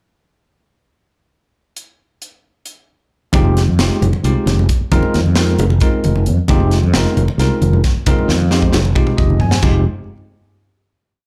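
Slick and intense, this short electric jazz fusion piece runs in a straight 7/8 feel and sounds like a live gig heard through a club's PA, with a light reverb around the room. A crisp fusion drum kit opens alone at 1.8 seconds with a pickup bar, its high-tuned snare, tight kick, hi-hat, toms and crash cymbal sitting up front with a polished, airy sheen. At 3.3 seconds the groove settles on Fm7 as the fretless electric bass enters with a growly, syncopated riff, thickened by lush chorus and placed prominently in the mix. Alongside it, a bell-like tine electric piano plays a funk chord rhythm in rootless voicings, bright and clean, dressed in plate reverb and slapback echo, while low-tuned congas with a thick skin tap out an evenly spread pattern in the background. Near the end the drums break into a fill and the electric piano adds a brief fill of its own, before the piece lands on a final chord that rings out to the close.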